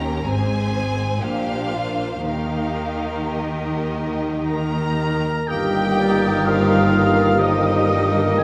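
In a slow, rubato 3/4 at roughly 50-65 BPM, this short classical passage in E-flat major unfolds with a lyrical, tender mood. Bowed strings carry it from the start: rich, vibrato-laden violins sing the focused melody over a second violin line, dark violas murmur the accompaniment in the background, and a smooth, even cello section joins the double basses on the bass. At 4.5 seconds a distant oboe with light vibrato adds a second line while a clear, roomy trumpet places stabs in the background. From 5.5 seconds, as the harmony settles onto an E-flat chord over G, the full wind and brass colour fills in: a very quiet clarinet and an airy, close-miked flute group add further lines, a mellow bassoon joins the accompaniment, French horns and a tight trombone section hold soft sustained chords, and a present tuba anchors the bass. The whole ensemble sits in a wet concert hall reverb that lends a spacious, glowing bloom, and the passage is cut from a longer piece.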